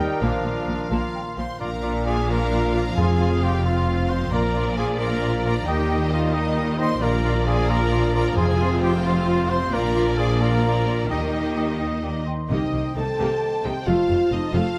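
Adventurous and determined, this cinematic orchestral passage in 6/8 moves at 88 BPM, with a bright, intense violin section carrying the melody over a lush bed of a distant second violin line, a very quiet clarinet, a hollow flute, a mellow cor anglais in the background and a smooth, very quiet viola accompaniment. Mellow French horns and a vintage-toned trombone section hold sustained chords, soft-attack trumpet stabs punctuate, and a ringing, thumb-plucked harp arpeggiates while focused cellos and up-front, expressive double basses anchor the low end. Timpani strike in brief hits at 3.0, 8.4 and 12.5 seconds, the harmony cycles through Bb, Fm and Eb before closing on Cm7 and F, and a moderate concert hall reverb surrounds this excerpt from a longer piece.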